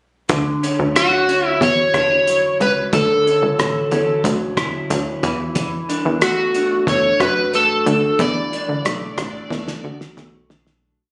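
Captured on a phone in the room with a light studio reverb, this dreamy, sunny indie and bedroom pop piece in D major moves at 91 BPM in a straight 4/4, as a bright, twangy electric guitar through a small old amp rolls out fingerpicked chords drenched in lush chorus and warbly pitch drift over Dmaj9 and then E9sus4, a punchy, plucky analog bass carries a rounded, melodic line, and a cloth-damped, thuddy kit with a fat snare, tight kick and rolled-off top keeps a soft rhythm-box pattern, while from 1.0 seconds an up-front, overdriven slide guitar with subtle chorus and slapback echo sings a motif-based melody until the whole piece fades out from 8.2 seconds under a drum fill at 9.5 seconds.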